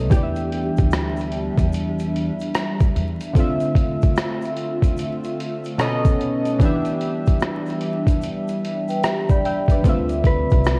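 Lo-fi hip hop in a hazy, melancholic mood, where a gritty, thumpy boom bap kit sits up front under round analog keys and a detuned, warbling pad, with a dark, clean electric guitar melody heard only until 2.9 seconds and again near the end, woody pizzicato upright bass, a grainy shaker in the background and a brief ringing vibraphone line at 8.9 seconds, all colored by worn cassette tape, vinyl crackle and pitch drift in this short excerpt.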